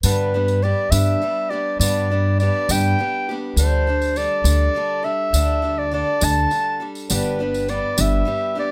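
Indie folk in G major at 68 BPM in 6/8, this nostalgic, uplifting passage from a building arrangement features a warm, classical-style clarinet up front carrying the melody with a slapback echo, over a bright picked acoustic archtop guitar, a woody, dark pizzicato upright bass and a jingly, close and dry tambourine, all set in light reverb as the chords move from G to Dsus4 at 3.6 seconds and back to G at 7.1 seconds.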